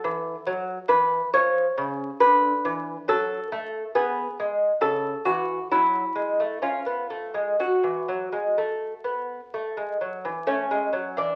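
In a rubato 3/4 at 61-71 BPM, this flowing, dance-like baroque-style classical fragment in F# minor features a solo fingerpicked lute, bright and delicate with doubled gut strings and some octave-doubled courses, set up front in a moderate studio reverb and heard through the crackle of a very old 78 rpm record.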